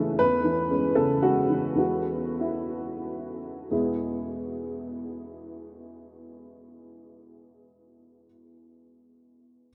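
A dark upright piano opens this short fragment of a longer neoclassical minimalist piece, playing alone from the very start across a range of E2 to C#5. The mood is tender and peaceful, set in E major and 3/4 with a rubato feel that moves between 90 and 128 BPM, and the opening passage slows down through its first 3.7 seconds. The harmony rests on a C#m/E chord at 0.2 seconds before settling onto E, and a second passage follows until 7.5 seconds. The instrument sounds woody, boxy and mellow, with short sustain and an up-front presence. Around it, a huge, wet ambient reverb with a 7.5-second decay places the playing in a vast, echoing space, and the tuning sits slightly above standard pitch at A4 = 441 Hz.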